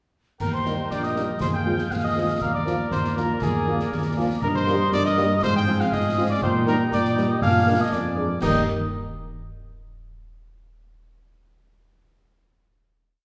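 A warm cornet carries the melody of this festive military-style march for wind band, played with light vibrato in a proud classical style at 120 BPM in 2/4, in Eb major. Behind it, a mellow wooden piccolo with a pure, distant tone doubles the tune at the octave, while a woodwind section with a smooth top holds sustained chords. The mellow tuba sits soft and roomy underneath, placing bass on the beats and sustained bass notes. From 0.7 s a French horn section adds after-beat chords and sustained chords in the background, and a very quiet, close-miked trombone section contributes punchy, clear short accented chords alongside sustained ones. Clash cymbals with a dark edge, concert bass drum and concert snare drive a marching snare over a bass drum on the beat, and the whole band closes on a final Eb chord at 8.4 s, ringing into a wet recital hall reverb.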